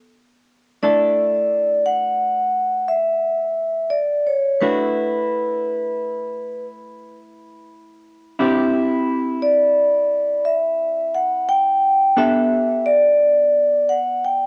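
Bright and driving, this progressive instrumental fragment moves in an odd 11/8 metre with a straight feel, taken from a longer piece and tuned slightly below standard pitch. A dark, clean, picked hollow-body electric jazz guitar opens the accompaniment at 0.0 seconds, and a metallic, ringing vibraphone played with medium mallets and its motor off carries the melody from 0.8 seconds, both placed up front. The harmony moves through suspended and added-ninth chords, from Gadd9 through Asus4, Dadd9 and Cadd9 and back to Gadd9, all bathed in a moderate spring reverb with the soft grain of a home cassette recording.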